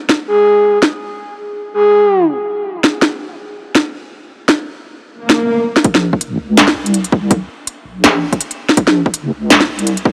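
An overdriven industrial drum kit drives this half-time drum and bass cut at 164 BPM in 4/4, its clanging snare and crisp hats sitting up front with a 16th-note swing. The mood is heavy and cinematic, set in Bb minor. Early on, a breathy, flute-like synth lead holds an Ab4 with vibrato, chorus and tape echo, its soft attack layered with noise and a sub octave. An electronic swell rises at 5.2 seconds, and at 5.8 seconds a build-up begins over a Bbm chord. There, a hard-clipped, overdriven electronic kick arrives up front beside a deep, wobbling bass that spans Bb1 to Db2 with chorus and a dark, compressed square-and-sine tone. The sound is dry and gritty, with light reverb and a digital ambience.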